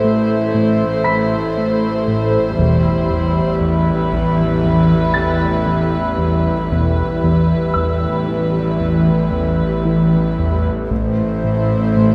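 This tense, mysterious excerpt of suspense film score opens at a slow 58 BPM with a dark, sul tasto violin section carrying a floating melody over softly bowed violas, ethereal sustained chords from a glass harmonica, a fat sawtooth analog bass riff with a moving notch, a background cello section with light vibrato, and a string-like drone steeped in its own reverb, while a clear concert grand adds high, short-sustained texture. At 2.6 seconds a very quiet double bass section enters as the harmony moves from A minor to E minor, and a taiko ensemble strikes in the background with heavy sticks, returning at 10.9 seconds as the chords settle back on A minor. The ensemble sits in a wet scoring-stage reverb.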